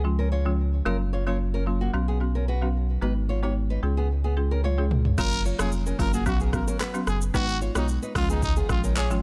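A woody, dry folk marimba and a round, deep analog bass open this romantic, breezy afrobeats excerpt, soon joined by a small, fingerpicked nylon-string guitar riff with digital delay over F#maj7, Bsus2, G#m7 and C# chords. An electronic deep house drum kit with a punchy kick, handclaps, rim click, shaker and toms enters with a fill at 4.6 seconds. From 5.2 seconds a raspy, growling trumpet carries the melody with light vibrato and its own delay, all set in a small room.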